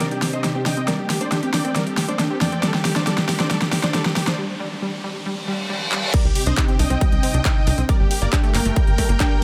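A huge, thick supersaw melody with a cassette-tape tint, sidechain pumping, filtering and delay leads this driving, bittersweet uplifting trance passage at 137 BPM in G minor. It plays over silky, very quiet analog string-pad chords, lush unison-pluck arpeggios with digital delay under a filter sweep, a tight sawtooth sequencer bass, and an overdriven big-room kit of huge snare, congas, handclaps, hi-hat and crash. The passage builds through a break, with an electronic riser from 3.8 seconds and a reverse cymbal from 5.3 seconds, until a punchy, up-front electronic kick arrives with the drop at 6.1 seconds, all set in a light reverb.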